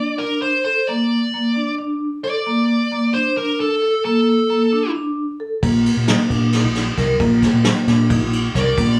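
Driving and intricate, this progressive instrumental excerpt moves at 266 BPM in eighths through a straight 7/8 in Bb major, cut from a longer piece. A dark, smooth lead guitar with overdrive carries the picked melody up front, while a vibraphone played with medium mallets rings out metallic arpeggios throughout, its fast motor vibrato lending a dark, smooth shimmer. The guitar falls silent at 4.9 seconds, and at 5.6 seconds a round, punchy fingered electric bass and a vintage brush drum kit enter as the harmony moves from Bbmaj7 to Eb5/Bb. The acoustic kit sits forward in a small room, with a tight kick, a medium-tuned snare under brushes, and dusky cymbals with a rolled-off top. The guitar returns briefly at 8.6 seconds, and moderate studio reverb plus the ambience of a band playing live together in one room wrap the sound.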